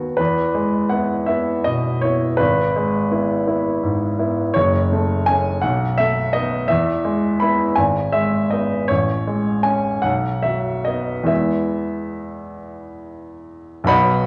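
Swaying in a rubato 6/8 at roughly 45-57 BPM counted in dotted quarters, this romantic character piece for solo piano unfolds in E major with a lyrical, warm mood. A clear, polished baby grand sits up front and plays alone from 0.0 to 14.3 seconds, ranging from F#1 up to B5. The harmony moves from E through E/G#, F#m and B7 back to E, then on to G#m, Amaj7 and B before settling back on E at 11.3 seconds. The piano rings into a wet recital hall reverb with a 1.2-second decay, alongside a studio ambience. Over the whole sound lies the worn, warbling character of old cassette tape, whose pitch drift lends a gently wavering haze to this short extract from a longer piece.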